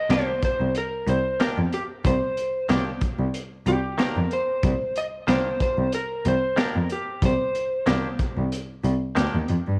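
Straight-eighth soul blues at 93 BPM in C minor, brooding and mournful, resting on a Cm9 chord as a slightly broken-up, fingerpicked electric slide guitar carries the melody until 7.8 seconds, a bright, twangy clean electric guitar with lush chorus plays stabs, a dark bowed cello with vibrato holds the bass up front, and a crunchy, saturated breakbeat kit with a high-tuned snare and punchy kick drives the groove up front, set in a small room with light reverb.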